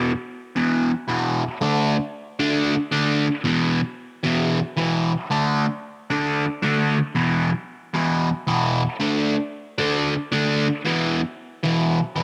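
A moderate spring reverb and a digital ambience surround this dark, trippy rock excerpt, cut from a longer piece. A single electric fuzz guitar carries everything, bright and distorted, double-tracked and compressed, and placed up front in the mix. Picked through fuzz with a phaser on top, it moves between E5 and D5 power chords, landing back on E5 at 10.9 seconds. The straight 7/8 metre gives the riff an odd, lurching cycle that suits its hazy, psychedelic mood. The guitar holds alone from the opening to 12.2 seconds, ranging from a low E2 up to D4.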